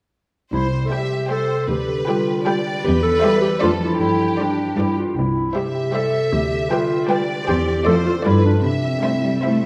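A mellow solo clarinet with a smooth top carries a second line over a focused violin section melody in this quirky, whimsical cinematic cue in C major at 155 BPM in 3/4, joined by ringing, fingerpicked concert harp arpeggios, an expressive cello section bass with portamento, a close second violin line in the background and lush, even violas, set in a wet recital hall reverb in a brief passage cut from a longer piece.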